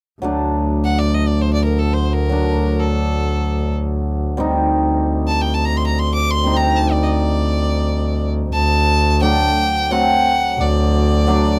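Played in free time, this short klezmer passage from a longer piece feels soulful and festive at once, unfolding with a rubato sweep. A hammered cimbalom and a bowed double bass open together, the cimbalom shimmering and ringing as accompaniment while the bass holds a single low note with light vibrato and a reedy, gut-string, period-style tone. At 0.8 seconds a single violin enters up front with the melody, its sound biting, nasal and intense, with a smooth top and vibrato. The harmony drifts away from its home chord midway and settles back at 8.5 seconds, where a new section begins. Close, detailed microphones and very little reverb keep each instrument intimate and present.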